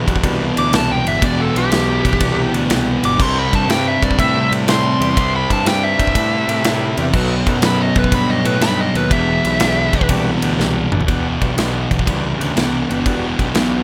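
A thick, double-tracked fuzz guitar sits up front with a heavy riff in E minor, driving this brooding blues rock and southern rock fragment at 122 BPM in 4/4 with a swung eighth-note feel. Beneath it, a growly, brilliant picked bass with fuzz and overdrive carries the low end. A big acoustic rock kit sits close in a studio room, with a punchy kick, medium-tuned snare, crash, ride and toms. From 0.6 seconds a dark, smooth lead guitar with overdrive and slapback echo plays a solo line high above, stopping at 10.1 seconds. An overdriven tonewheel organ holds gritty, percussive sustained chords in the background through a slow rotary speaker. The harmony moves from Em7 through Cmaj7 and B7 back to Em7, and a drum fill at 10.6 seconds leads into a new section, with the mix set in light reverb.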